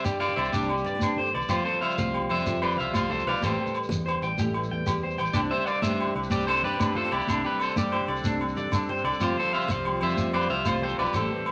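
Set in a wet studio reverb, this carefree, danceable highlife guitar band excerpt moves at 124 BPM in a straight 12/8 in C major, cycling through Csus2, Fsus2 and Am7. An up-front, twangy electric guitar on the edge of break-up carries the picked melody while a second slightly broken-up guitar plays arpeggios, over fingerpicked flamenco guitar accompaniment and a dark, round fingered electric bass. Ringing agogo bells, a grainy shekere and bright, high-tuned congas in the background drive the groove, and a sweet, reedy accordion with light tremolo tuning adds sustained chords from 5.3 seconds.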